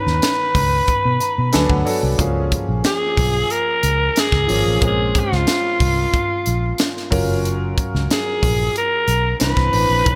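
A bright, glossy 1980s-style digital production with light reverb and a small-room ambience frames this short cut from a longer piece of polished jazz-funk pop, upbeat in mood and moving at 91 BPM in a straight 4/4 around Db mixolydian. Up front, a growling alto saxophone carries the melody with a breathy, raspy, gritty tone and vibrato, its vintage pop-style voice sitting high in the mix. Beneath it, a concert grand piano supplies accompaniment with a subtle chorus, an intimate feel, deep bass and long sustain, and its audible action noise adds a natural touch; it steps forward with a fill from 0.9 to 2.2 seconds. A dark, round, foam-muted fingered electric bass gives a punchy, amped low end, while a crisp acoustic fusion kit of hi-hat, punchy kick and high-tuned snare pumps in its small room, the whole kit placed up front. The harmony glides through lush chords such as Cbmaj9, Bbm9 and Gbmaj7 before landing on Cmaj9.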